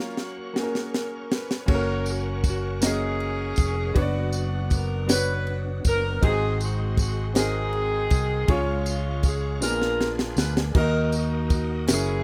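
A clear, smooth-topped saxophone section carries the melody up front with light vibrato over a slow, soulful 6/8 gospel groove at 53 BPM in F# major, joined by an intimate baby grand piano whose action noise is audible and a reedy tonewheel organ holding sustained chords in the background through a slow rotary speaker with chorus vibrato and key click. A tight, dry funk drum kit with bright cymbals and a high-tuned snare opens with a fill during a brief break, then the round, dark fingered electric bass enters at 1.7 seconds and a jingly, vintage tambourine at 2.1 seconds, with another drum fill at 9.6 seconds as the chords move through A#7b9 to D#m. The reverent passage, cut from a longer piece, has studio reverb and the rough feel of a home demo mix.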